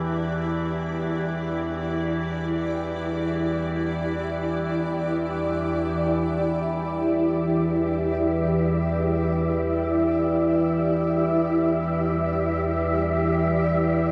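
In free time, this dark ambient drone in E minor unfolds as a cavernous, desolate fragment cut from a longer piece, resting on a single E minor chord. Down in the low register, an overtone-sweeping drone spans E2 to E3, its sawtooth and sine tones resonant and shifting with moving overtones, thickened by chorus and sitting up front. Above it, a granular cloud pad holds sustained chords between E4 and D5, a bright, blurred, detuned haze that slowly evolves. Very quiet tubular bells ring out metallic, solemn arpeggios on G4 with a vintage, band-limited tone until 6.2 seconds. From 7.5 seconds a breathy, wind-like tuned noise texture drifts in on E5, dark and airy. The whole is bathed in a huge, wet reverb that suggests a vast, echoing space, with a cassette-tape patina.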